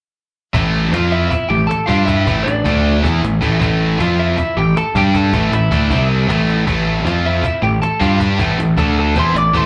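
A bright, cranked stack guitar with overdrive and slapback echo and a very quiet, warm overdriven guitar play the riff from 0.5 s over a growly, fuzz-driven picked bass up front and a snappy cajon with snares in the background, joined at 1.1 s by a dark, slightly broken-up, compressed lead guitar melody, in an angry, urgent punk rock excerpt heard like a live gig through the venue's PA with club reverb and a cajon fill at 6.5 s.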